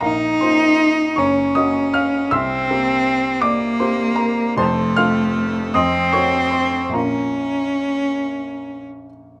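Swaying in a rubato 6/8 with uneven beats, this melancholic, solemn romantic classical excerpt sets an intense, clear bowed cello melody with vibrato and a smooth top at the front, over a baby grand piano whose intimate accompaniment carries audible action noise, the cello falling silent at 8.9 s while the piano sounds on to 9.4 s in a moderate recital-hall reverb captured through close, detailed microphones.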